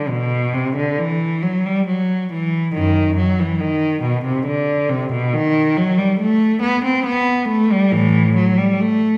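In a flexible, rubato three-beat lilt, this radiant, dance-like fragment of a baroque-style suite movement features a single bowed cello, rich, smooth and even with vibrato and a silky top, ranging from F#2 to C4 and playing alone throughout its 9.2 seconds, wrapped in the lush reverb of a recital hall heard from deeper in the room.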